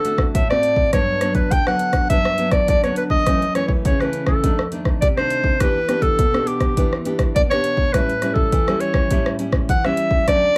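A straight 4/4 groove at 103 BPM from an electronic, layered deep house drum kit, with punchy kick, dark hats and rim click re-recorded in a small room and set up front, drives this lively, festive samba and choro fragment, where a clear, classical-style solo clarinet with a smooth top carries the melody over a fingerpicked nylon-string guitar whose fresh strings and finger squeak lend an acoustic warmth to chords moving from D7 through Gmaj7, F#m7, F6 and Em7 to A7, all within moderate small-room ambience heard from further back.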